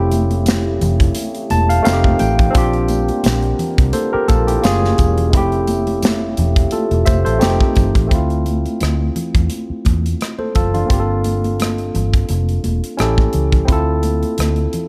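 A smooth, romantic stretch of lush 1970s-style soul at 86 BPM with a gentle 16th-note swing opens on a barky, up-front tine electric piano (with a fill at 1.2 s), dark, distant French horns holding sustained chords, and a round, foam-muted fingered bass, joined at once by a polished, airy studio drum kit with a punchy kick, high-tuned congas in the background and a faint jingly tambourine that stops at 7.9 s, while the horns drop out at 8.1 s as the harmony moves from Fmaj9 and Gbmaj9 colours to a Dm9, Gm11 and A7 passage, all set in light reverb.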